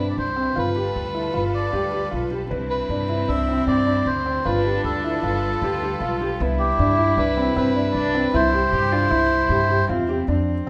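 Contemporary chamber music in a playful, restless 5/4, in which a reedy, breathy melodica carries the melody up front over felt-muted upright piano arpeggios with audible action noise, a woody, growly pizzicato upright bass, and a rich bowed string section holding chords in the background, while a distant, gut-string cello adds a second line from 2.5 s, all set in a recital hall's wet reverb as Cmaj9 and G9 harmonies alternate.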